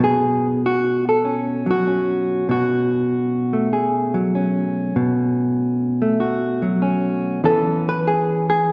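A hollow-body jazz guitar plays alone, its electric tone dark, clean and compressed, fingered up front and ranging from B2 to B4. This relaxed, sophisticated solo jazz moves at 97 BPM in 4/4 with a swung eighth-note feel, settling on Bsus2 before turning to E6 at 7.4 seconds. A wet reverb lends the short passage the spacious air of a church or concert hall.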